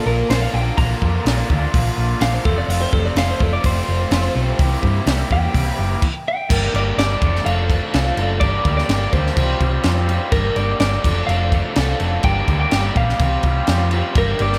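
A big arena sound with moderate hall reverb frames this restless, cool indie rock excerpt, where a slightly broken-up lead guitar through a small old amp carries the melody with slapback echo and digital delay, playing a clean solo until 6.5 seconds, over two picked, overdriven garage guitar riffs (one bright with phaser, the other lo-fi in the background with subtle chorus), a very quiet flute-like tonewheel organ with slow rotary swirl holding chords, a round, dark hollow-body bass up front, and a dry cocktail drum kit with punchy kick, high-tuned snare and dark cymbals.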